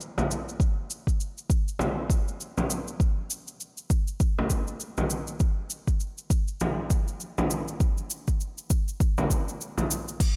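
Warm and meditative, this downtempo excerpt at 100 BPM moves with a gentle sixteenth-note swing, built from an electronic afro-pop drum kit of cabasa, crash cymbal and smooth hi-hats, a deep acoustic frame drum set in a large room, and a deep electronic kick that sits up front, all under a light reverb.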